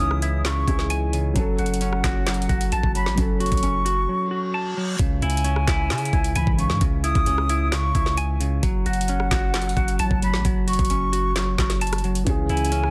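A half-time trap groove at 132 BPM in C# minor drives this eerie, melancholic hip hop piece, with an up-front trap kit of knocking kick, woody snare, metallic hats, handclaps and rim clicks riding over a deep, sine-toned 808 bass whose long notes decay after a fast attack. A clean, hollow-bodied semi-hollow electric guitar plays fingered arpeggios through digital delay, while a distant, airy jazz flute with expressive vibrato carries a second line high above, also touched with delay. A dark, boxy concert grand supplies chords at the start, drops out at 5.0 seconds after a brief break where a reverse cymbal rises from 4.3 seconds, and returns near the close. In the second half, mellow synth brass stabs with a chorus effect and a filter sweep punctuate the harmony, which moves between C#m and F#m. The mix is dry, dense and heavily limited, and the recording is cut from a longer piece.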